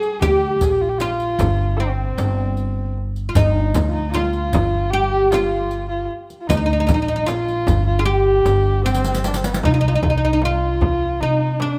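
Persian modal ensemble music, hypnotic and melancholic, in which a deep, woody, plectrum-plucked fretless oud carries the melody up front, a dark bowed kamancheh with vibrato, portamento and a smooth top plays a second line, a pizzicato upright bass on steel strings anchors the low end, and a tight, very quiet tombak, a soft-handed frame drum in the background and a riq with bright jingles keep the pulse, with the riq dropping out after a drum fill from 8.9 to 9.6 seconds, all set in light reverb with close, detailed microphones.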